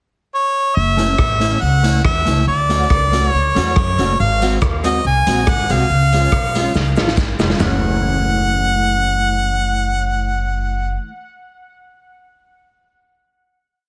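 A ska beat at 141 BPM in straight 4/4 drives this short, mischievous piece in F# minor, with the raw garage drum kit setting a side-stick backbeat from 1.0 s and closing its run with a fill that leads into the final chord at 7.6 s. The kit has a punchy kick, a medium-tuned snare and a dark, rolled-off top in a bright stone room. An upright bass walks underneath in woody, thumpy pizzicato on gut strings, with slides. The mellow electric guitar plays clean, fingered off-beat chops through an ensemble chorus, while a very quiet, grainy cabasa adds eighths in the middle stretch. Out front, a clear harmonica with light vibrato carries a motif-based melody in song phrases, set in dub echo and plate reverb. The chords move from F#m7 through Dmaj7, G#7 and C# before resolving on F#m7, and the whole piece has a heavily compressed radio sound with light reverb.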